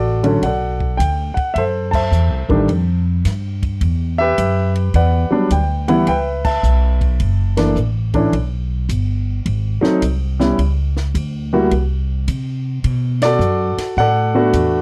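A dry, close 1970s-style studio sound frames this swinging, smoky jazz piano trio fragment, where an up-front grand piano touched with slapback echo carries the melody over a woody, growly pizzicato upright bass and a compact cocktail drum kit with dark cymbals and a high-tuned snare, the whole band hitting accents at 1.8, 6.4 and 13.1 seconds.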